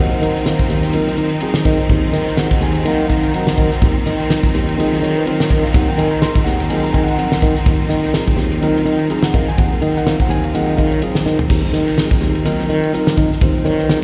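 A growly, bright fretless electric bass sits up front in this intense, funky electric jazz fusion excerpt, sustaining its notes in the low register at 125 BPM with a 16th-note swing feel in Eb dorian. Beside it, a damped 70s drum kit enters at 0.2 seconds, dry and close, with a fat snare and tight kick working across hi-hat, ride, crash and toms, and it breaks into a fill at 11.3 seconds. A mellow tine electric piano plays clean accompaniment through its built-in speakers, its slapback echo adding a short doubled edge to the Ebm69 harmony. Underneath, a clear studio string section holds bowed, focused sustained chords with vibrato, sitting lower in the mix. The whole performance carries the feel of a live gig heard through a venue's PA, with recital-hall reverb around it.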